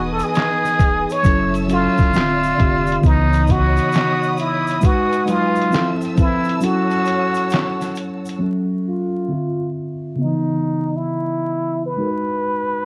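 Nostalgic and hazy, this lo-fi hip hop excerpt in F# dorian drifts at 67 BPM with a swung 16th feel, led by a breathy, whispered plunger-muted trumpet with wah-wah and vibrato, up front beside a worn, slightly out-of-tune tine electric piano, both filtered and dulled by cassette tape. Beneath them sit distant, lush bowed strings with portamento and plate reverb, a round triangle-and-square sub bass that drops out at 3.8 seconds, muffled, pitched-down sampler drums with a thumpy kick, handclaps and 12-bit grit, and a faint, grainy egg shaker. The drums, shaker and strings fall away at 8.4 seconds, leaving trumpet and electric piano under a filter sweep as jazzy seventh and ninth chords pass beneath a layer of vinyl crackle.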